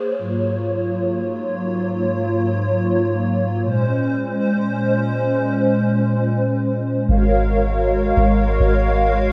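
In free time, this hazy, spacious hip hop fragment floats on a hollow, flute-like pad with an ensemble chorus. The pad sustains chords from Ab13sus4 to Bbm9 and back, tuned slightly flat to A4 = 438 Hz. At 7.1 seconds a deep, round 808-style bass lands on a low Ab beneath the returning Ab13sus4, while light reverb and the worn, warbling pitch drift of old cassette tape color the whole recording.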